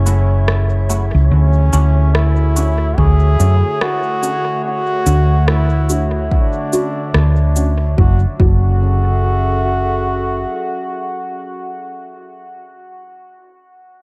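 Deep and meditative, this ambient dub passage moves at 72 BPM in F# minor with a 16th-note swing, drifting between F#m7 and Dmaj7 chords. A bright, solo trombone with vibrato carries the melody through dub echo over a warbling, nostalgic tape-like pad, while a muted, filtered chord stab sits in the background with phaser, lush chorus and echo. A round, punchy hollow-body electric bass stays up front until 10.4 seconds, an electronic shaker and rim click tick through dub echo, a deep, tape-warm kick joins at 3.0 seconds, and a breathy, wind-like noise texture hovers very quietly until 8.0 seconds.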